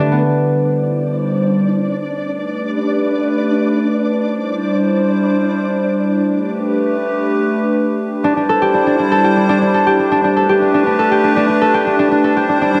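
A lush, moderate hall reverb surrounds this wistful, intricate IDM excerpt, which moves at 120 BPM in a straight 4/4. A hollow, soft pad sits up front with sustained chords, its airy, flute-like tone blending square, triangle and sine waves with a noise layer, softened by chorus and a filter sweep through the opening section. Thumb-plucked concert harp arpeggios ring out beside it, acoustic and warm yet roughened by vintage 12-bit sampler grit and a delay. From 0.8 s a flickering, detuned granular texture with its own reverb drifts quietly in the background, and the harp drops out at 3.2 s. The harp returns at 8.2 s as a second section begins, while the harmony keeps alternating between D9sus4 and A9sus4 every two seconds.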